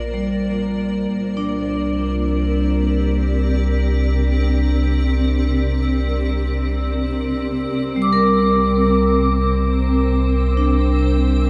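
This ambient piece drifts in free time with a peaceful, serene mood, captured as a short portion of a longer work. A granular cloud pad fades in across the full 11.5 seconds, holding sustained chords with a blurred, evolving, detuned body that sits up front and blooms through its own built-in reverb and a shimmer reverb. Over it, a vibraphone struck with medium hard mallets and its motor off plays arpeggios in a dark, smooth, metallic ring, trailed by a diffuse ambient delay and shimmer. Underneath, a deep, round sine sub bass holds the low end with a fast attack and sustained tone, placed prominently in the mix. The harmony moves from Bb to C5 at 1.1 seconds and settles on Bb13/C at 7.7 seconds. A huge ambient reverb with an 8.6-second decay surrounds the parts, giving the whole passage a vast, floating space.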